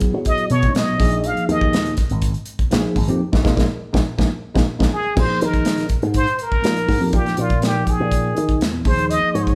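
A plunger-muted trumpet takes the lead with a close, wah-wah jazz solo, playing from 0.3 to 2.0 seconds and again from 4.9 seconds on, over an intense, funky electric jazz fusion groove at 122 BPM in a straight 4/4. A growly, envelope-filtered slap bass and a punchy, polished acoustic drum kit with crash, hi-hat, kick and snare drive the band, while a clean tine electric piano comps on suspended chords such as Gb9sus4 and Bb7sus4, with a band accent running from 3.2 to 5.2 seconds. The group plays live in one room with a moderate large studio reverb, and this short excerpt is cut from a longer piece.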